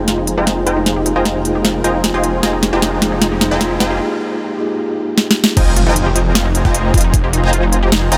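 A supersaw stab riff, punchy and up front with sidechain pumping, a low-pass filter sweep and digital delay, opens this bittersweet, dreamy half-time future bass excerpt over a thick, chorused detuned saw bass, a mellow tine electric piano, a bright unison pluck playing quiet arpeggios and a crisp, overdriven trap kit with sharp snare and hats. A shimmering, ethereal pad sustains Fm11 colour from 0.7 s, while a faint riser builds through drum fills toward a break at 4.0 s. At 5.6 s the drop lands with an impact and a knocking, overdriven electronic kick, the electric piano falling away as the stab, bass and pluck carry on in light reverb.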